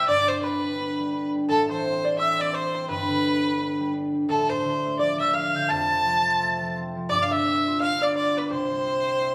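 A swung Celtic hornpipe at 171 BPM in 4/4, this dark yet lively, spirited folk passage is cut from a longer piece. A clear, focused bowed fiddle carries the melody up front with light vibrato. Around it, an airy, hollow metal whistle and a very quiet, plunky fingerpicked open-back banjo add second lines, while a ringing concert harp, also up front, accompanies through chords moving from G to Am7, back to G, then Dm, F and G7 before landing on C, all played live in one room with wet stone reverb.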